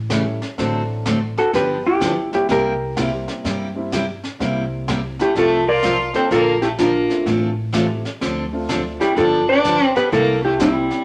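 This swinging, down-home western swing excerpt at 126 BPM opens with woody pizzicato upright bass, joined almost at once by a boomy, airy brush kit with a high-tuned snare, a bright, full-bodied picked acoustic guitar up front and a mellow upright piano tucked in the background. A dark, clean hollow-body electric guitar takes the melody from 1.4 seconds, and from 5.2 seconds a clear, earthy bowed fiddle with light vibrato adds a second line. The chords move through A7, G7 and C7 before shifting to F/C, Bb, Dm7 and back to G7 and C7, all set in a moderate studio reverb.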